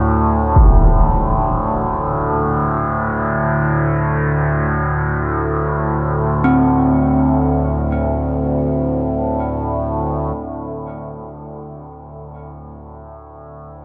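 A dark ambient drone opens from the start, cavernous and unmeasured in free time, built on a sustained low drone whose moving overtones sweep over a sawtooth-and-sine core, resonant and bright, placed up front with chorus and its own reverb. Beside it, a gamelan-type bronze metallophone plays arpeggios in a low register, its ringing metallic tone struck with a horn mallet and softened into a smooth, shadowy color, with delay trailing each note. At 0.6 seconds a huge, muffled impact lands once, filtered so that only its deep weight comes through. The harmony rests on a rootless Gsus2 over D, and the whole is bathed in a vast, wet reverb that lets sounds hang for seconds in a dark, warm production. The metallophone falls away at 12.3 seconds, leaving the drone to carry the closing moments of this fragment cut from a longer piece until 13.8 seconds.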